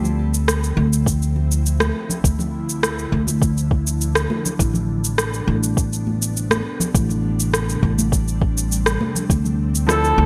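Bright 1980s-style digital production with light reverb and small-room ambience frames this smooth sunset chillout excerpt at 102 BPM over Dm9 and Am11, where a woody, thumpy pizzicato upright bass and an overdriven electronic kick, shaker and rim click sit up front, ringing congas linger in the background, an ethereal, detuned pad with chorus and phaser holds sustained chords, a dark baby grand piano with delay touches in briefly at the start and again at 9.9 seconds, and a mellow flugelhorn with light vibrato enters on A4 at that same moment.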